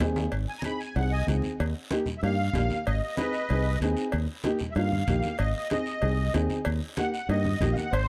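A straight 4/4 cumbia groove at 189 BPM in Ab major, festive and sunny, opens with a brief drum fill before a reedy, shimmering musette accordion with tape echo enters at 0.5 seconds to carry the solo over a punchy, up-front fingered electric bass, a dark, woody, boxy upright piano on alternating Ab and Eb chords, bright, low-tuned congas in the background, ringing, close cowbell and timbales, and a raspy guiro, set in light reverb within a dark production in this short excerpt from a longer piece.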